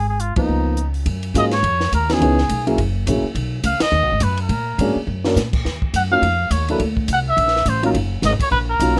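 A swinging 209 BPM pulse in 4/4 drives this smoky, late-night small-group jazz excerpt in F# major, where a cup-muted trumpet sings a veiled, soft melody with vibrato and scooped notes over a woody, thumpy pizzicato upright bass, a mellow dark grand piano whose action noise is audible, and a compact cocktail kit with dark cymbals, a high-tuned snare and a punchy kick, all captured close and dry with band accents at 0.3 and 3.8 seconds and a drum fill at 5.1 seconds.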